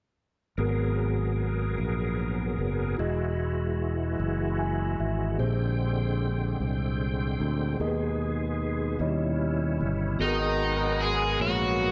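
Slow gospel in G# minor at 50 BPM in 6/8, soulful and solemn, with a mellow tine electric piano, a reedy tonewheel organ with key click and slow rotary chorus, and an up-front fingered electric bass moving through rich chords from G#m9 to Emaj9, A#13 and a tense D#7b9, the piano adding a fill at 4.2 seconds. At 10.2 seconds an overdriven slide guitar played with fingerpicks takes the melody alongside a distant, octave-doubled horn section, while a very quiet, nasal, stopped French horn section holds chords beneath. A moderate echo chamber reverb lends the short excerpt a churchly depth.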